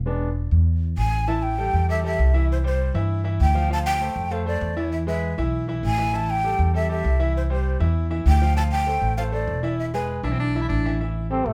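A straight 4/4 Latin groove drives along at 198 BPM in A minor, a passionate fragment cut from a longer piece. Pizzicato upright bass, woody and thumpy with steel strings, sits up front, while a bright concert grand piano with deep bass lays down the accompaniment over a cycle of Am7, C, Dm7 and E chords. At 1.0 seconds a breathy, bamboo-toned shakuhachi takes the melody, end-blown and close-miked, tongued and expressive with vibrato. Near the close a baritone saxophone adds a brief second line with scooped notes and a smooth top, and a punchy, distant trombone steps in for the final moment. Light reverb gives the feel of a band playing live in one room.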